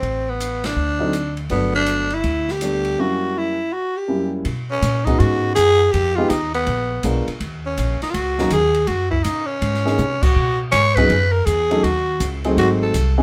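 A growling, raspy tenor saxophone carries the melody up front from the start with breathy subtone and scooped notes, over woody pizzicato upright bass and an airy acoustic drum kit with dark cymbals and a boomy kick, while a warm upright piano joins on accompaniment at 1.0 seconds. This playful small-group swing-and-bop excerpt moves at a brisk 163 BPM in 4/4 with a firm swing, punctuated by band accents and a break from 3.0 seconds before settling into B major at 4.5 seconds. Later there is a short drum fill, and a moderate studio ambience gives the polished kit a small-room feel.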